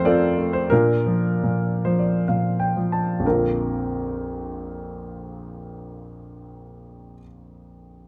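Classical solo piano in a lyrical, hopeful mood, this brief excerpt from a longer piece presents a clear, worn concert grand with deep bass, heard up front through close, detailed microphones and light reverb, moving in a rubato three-beat lilt that slows through its opening bars, adds a fill from 1.4 to 3.2 seconds, and then settles into a new passage on a richer chord.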